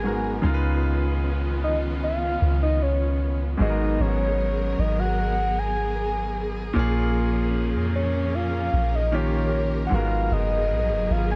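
A round, octave-layered synth lead with chorus, phaser and vibrato carries a moody, longing melody through this contemporary R&B excerpt, backed by a clear concert grand piano, bowed studio strings holding smooth sustained chords, and a deep, up-front 808-style bass, set in studio reverb.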